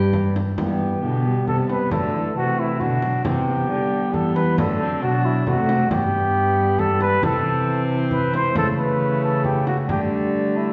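A mellow, vintage-toned cornet leads this stately, festive Renaissance-style consort dance in triple time, sitting up front over a reedy, distant viola second line, a solo trombone with soft attack and a smooth top, and a warm, nasal gut-string cello bass, with a deep, close, dry frame drum joining at 0.1 seconds. The period-style viola and the trombone carry a light vibrato as the harmony moves from G through D, Cmaj9 and A/C# before resting on a Dsus4 at 9.9 seconds. It is all set in a wet recital hall, heard from further back in the room, and the passage is cut from a longer piece.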